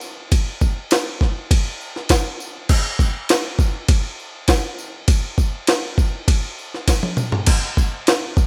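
Cool and moody, this straight-feel rock passage at 101 BPM sets a jingly, bright acoustic tambourine far back in a live room against an up-front, gritty, pitched-up jungle sampler-style drum kit whose compressed, overdriven crash, ride, toms, thumpy kick and high-tuned snare drive the groove into a fill at 6.9 seconds, all within a rough home demo mix touched with light reverb.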